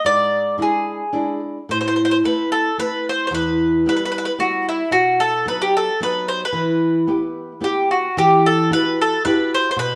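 A round, double-strung mandolin sits up front with a wistful, passionate melody in this short Italian folk passage in three, played with a loose rubato feel. A warm, fingerpicked flamenco guitar, also close and present, carries the accompaniment through a minor-leaning progression that opens on E7/G#, moves through Am and Em to B, and settles on Emadd9 at 8.2 seconds. Both players perform together live in a stone room whose reverb gives the pair a natural, resonant glow.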